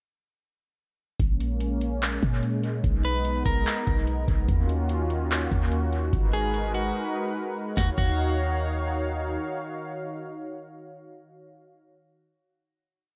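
A sparse half-time beat from a booming analog drum machine, with a deep kick, crisp snare, metallic hats, handclaps and crash cymbal carried by dub echo, opens this melancholic, spacious cloud-rap hip hop piece at 1.2 seconds, together with a clean, boomy 808-style bass whose long sine sub notes follow the kick. A smooth, airy sawtooth pad with chorus and sidechain pumping holds sustained chords up front, while from 3.0 seconds a slightly broken-up electric guitar plays a sparse looping melody through a low-pass filter and dub echo, repeated like a sampled loop. After a short break at 7.0 seconds, the pad carries a final chord to the close in an echo-heavy digital ambience.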